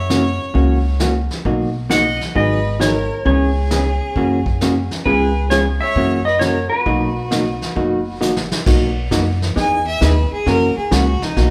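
Swinging and down-home, this short western swing excerpt at 133 BPM in B major opens with a clean, fingerpicked slide lap steel carrying the melody over a rich, lightly vibratoed bowed fiddle line, a woody, thumpy gut-string upright bass, a dark, compressed hollow-body jazz guitar up front, and a roomy brush kit with dark cymbals and a punchy kick, until the steel drops out at 8.2 seconds for a drum fill and the distant, intense fiddle takes a solo from 8.7 seconds, all in a moderate large-studio reverb with the band playing live in one room.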